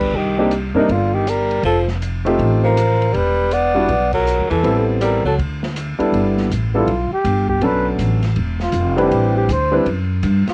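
A dry home recording on cassette carries this relaxed, swinging excerpt of small-group jazz, played in G major at 160 BPM with a moderate swing on the eighths. A mellow flugelhorn with light vibrato carries the melody while a raspy, growling tenor saxophone adds a second line until 5.4 seconds, over a woody, thumpy upright bass played pizzicato, an up-front grand piano comping through chords such as Cm9, Em9 and G69, and a dark, rolled-off drum kit sitting low with dark cymbals and a boomy kick. After a band accent at 4.1 seconds, the flugelhorn takes a solo from 6.1 seconds to the end.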